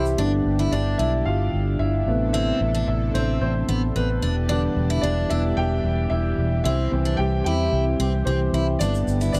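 A straight 4/4 pulse at 111 BPM drives this short, anthemic piano-driven pop excerpt, cut from a longer piece. A baby grand piano sits up front with an open tone and long sustain, opening with a fill at 0.0 seconds before carrying a solo through the passage over a G, Amadd9, Em7, C progression that returns to G. Beneath it, a dark, round, foam-muted electric bass lands punchy and prominent, while a picked jumbo steel-string acoustic guitar adds a bright, full-bodied riff. A smooth, detuned sawtooth pad with soft attack, long release, a moving notch and chorus holds sustained chords in the background, lending a warm glow. A grainy, mellow tube shaker appears briefly near the start and returns at 8.8 seconds, and the whole mix has the dry, close feel of a 1970s studio with little reverb.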